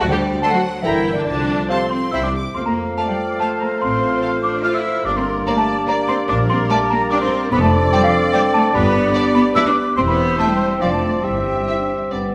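A small, bell-like celesta carries the melody from the first moment of this playful, whimsical film cue, its delicate, sweet tone sounding slightly vintage and band-limited, with a pure-toned concert flute tracing a second line beside it. Moving in a straight 3/4 at 145 BPM, the music sits in F major before turning toward C major from 7.5 seconds, giving the short passage a magical, storybook lift as it is cut from a longer piece. Around them the full orchestra is present from the start: violins set in the background, a viola section with soft attacks and expressive portamento, a dark, roomy French horn section holding sustained chords, and a lush low end from a clear cello section and a rich, smooth-topped double bass section. At 0.4 seconds a second violin section joins the melody from a distance, while a clear oboe with light vibrato and a mellow, punchy clarinet add second lines and a mellow bassoon fills in the accompaniment. 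The celesta and cellos sit most prominently in the balance, and a recital hall reverb with a 1.3-second decay wraps the ensemble in a soft, spacious glow.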